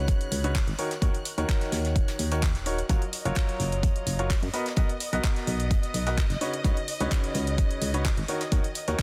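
A bright baby grand piano riff with long sustain and digital delay leads this uplifting, euphoric piano house excerpt at 128 BPM, pumping over a punchy, round FM bass, a lush vibrato violin section sustaining chords in the background, an up-front electronic kick, a tape-warm house kit of handclaps and hi-hat with soft-clipped snare, and a very quiet brushed kit, all moving through C#9sus4, D#m7, F#maj7 and Bmaj7 in a dense, heavily limited small-room mix.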